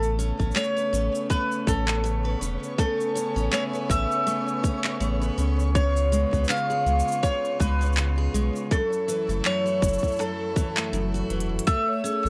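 The sound is lightly reverberant, with a tape-tinged, roomy drum sound set against a close, dry marimba at the very end. This playful, delicate folktronica excerpt moves at 81 BPM in 4/4 with a gentle 16th-note swing in A major, its harmony passing from Aadd9 through C#7 and F#m7 before arriving on Amaj7. An up-front mandolin carries the melody with round double strings and a touch of delay, while a picked steel-string acoustic guitar plays filtered arpeggios with audible finger squeak, and a clear string quartet holds sustained, lightly vibrato chords roughened by vintage 12-bit sampler grit. Underneath, a deep, round sine sub bass sits prominently beside a tight electronic kick, and an organic electronic kit adds cabasa, handclaps and crisp hi-hats re-recorded in a large room. A flickering, grainy granular texture hovers in the background from 0.5 seconds, and a drum fill at 11.3 seconds leads to a woody, bright marimba played with hard mallets that enters at 11.7 seconds.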